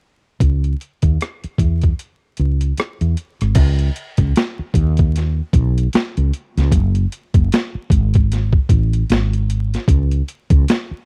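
Woody fretless electric bass and a boom bap sampler-style drum kit enter together at 0.4 seconds, setting an introspective, smooth neo-soul R&B groove in 4/4 with a swung sixteenth-note feel. The bass sits up front with a dark, growly, round tone and a hollow-body, amped character, moving through a low range from F#1 to E2. The drums are gritty and compressed, pitched down with a thumpy kick, a high-tuned snare, rim clicks, hi-hat and crash cymbal, carrying a tape-warm quality and the sound of being re-recorded in a large room. A break arrives at 2.0 seconds before the music moves into a new section at 3.6 seconds, and both parts continue until 10.9 seconds. The overall sound is a dry, close 1970s-style studio recording with little reverb and a layer of vinyl crackle, cut from a longer piece.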